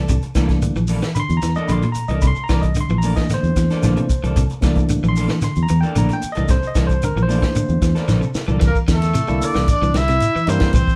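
Afrobeat at 113 BPM in a straight 4/4, funky and joyful, built over a C13 chord in C mixolydian and heard as a short cut from a longer piece. A bright, barky tine electric piano takes the lead for the first 8.6 seconds, its clean, direct tone riding over two slightly broken-up picked electric guitars, one warm and tucked in the background playing low arpeggios, the other darker and playing stabs until 8.6 seconds. Underneath, a round, foam-muted fingered electric bass sits dark and prominent, while a compact cocktail drum kit with a high-tuned snare and punchy kick sounds distant and roomy, joined by a grainy, mellow shekere placed close and dry. A drum fill at 8.1 seconds leads into the next section, where a warm trumpet with vibrato takes the melody at 8.7 seconds and a bright, present trombone with light vibrato plays a second line beneath it. The band sounds as if playing live together in one room, with moderate studio reverb giving the whole a lively, natural sense of space.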